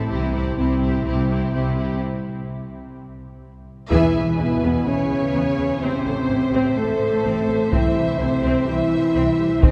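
A cathedral-wet wash of bowed strings and mellow French horns carries this adventurous, triumphant cinematic fragment, with distant violins on the lush, vibrato-laden melody over a focused second violin line, intense violas, smooth cellos and double basses, and sustained horn chords, as a build-up breaks off near 2.0 s before heavy-stick taiko and round, very quiet timpani mark a band accent at 3.9 s, the taiko returning at 7.7 s.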